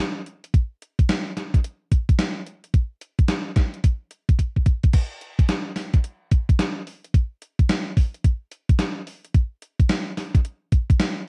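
The recording sounds dry and close, in the manner of a 1970s studio, with a light reverb around it. This short R&B cut is driven by a gated 80s digital drum machine, entering at 0.3 seconds with crash cymbal, hi-hat, kick drum and snare drum at 109 BPM in 4/4, swung at 64% on the 16ths. The drums sit up front with an electronic, sampler-style character: a thumpy kick and a snare treated with gated reverb give the groove its punchy, slick mood. A drum fill from 4.4 to 4.9 seconds carries the pattern into a new section, and the beat plays on until 11.2 seconds, where the piece is cut short.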